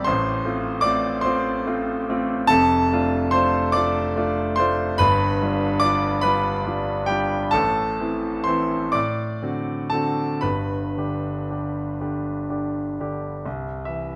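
Set in 6/8 with a freely breathing rubato, this romantic classical nocturne for solo piano unfolds at a slow, unhurried pace. A concert grand carries the whole passage from 0.0 to 14.2 seconds, ranging from deep low notes up into the bright upper register, its tone clear and polished with a rich, deep bass and long sustain. The harmony drifts through a gentle chain of chords over a single opening section, settling onto a C chord at 13.5 seconds. The mood is nostalgic and serene, inviting quiet reflection. Close, detailed microphones keep the instrument present and up front, while a moderate recital hall reverb adds a soft halo around each phrase in this excerpt cut from a longer piece.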